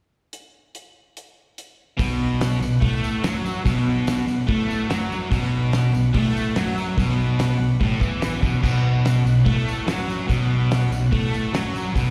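A driving straight 4/4 at 144 BPM from a dry, fat-snared 70s drum kit with a tight kick opens this swaggering classic rock excerpt in B minor alone until 2.0 s, when a Bm riff arrives on an up-front distorted electric guitar with slapback echo and a background crunchy guitar through phaser, joined by a fuzzed fingered bass, shouting tonewheel organ chords on a slow rotary speaker, and a jingly tambourine, all heard as a live gig through the venue's PA with recital-hall reverb.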